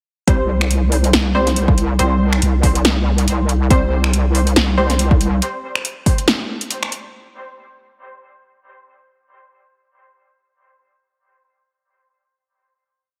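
Heavily compressed and radio-like with a light reverb, this brooding, meditative deep dubstep piece is one continuous half-time drop from 0.3 seconds, with a 56% swing on the sixteenths. An up-front, overdriven electronic kick drum and a punchy deep house kit of snare, metallic hats and finger snaps sound re-recorded in a large room, while a heavy, saturated square-and-sine wobble bass shifts its wobble speed through modulated phrases until 5.4 seconds. Above them, a muted, detuned sawtooth chord stab with a filter pluck and lush chorus drops sparse dub echoes, one chord shape moved in parallel, until it stops at 4.9 seconds.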